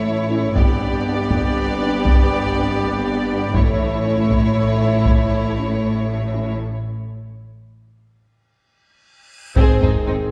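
Up-front, saturated taiko drums struck with hard sticks drive this triumphant, heroic excerpt of epic orchestral film score at 80 BPM in 12/8 and A mixolydian, under a focused, lush symphonic violin melody, a smooth chamber violin second line, background violas and cellos, distant double basses, mellow woodwind chords and very quiet dark French horns over A and G harmonies, heard from further back in a wet scoring-stage reverb, until a break at 6.6 s and a drum fill at 8.8 s lead into a huge, bright reverse cymbal and impact as tight, warm trombones enter on an Ab chord at 9.6 s.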